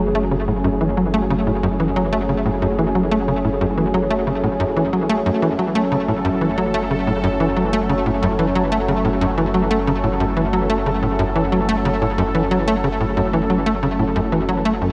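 A straight 4/4 pulse at 91 BPM is driven by a tight, punchy sequencer bass riff, nasal and sawtooth-edged with a plucky filter and analog chorus and delay, sitting up front in this hypnotic, expansive piece of ambient space music in F# minor, cut from a longer work. Above it, a sweeping resonant pad holds sustained chords across the 14.9 seconds, opening on F#madd9. The pad is airy and detuned with a noise layer, a filter swell, a slow attack and chorus, while a round sine sub bass sustains a deep F#1 underneath. The whole mix is soaked in a huge, dreamy reverb with an 8.3-second decay.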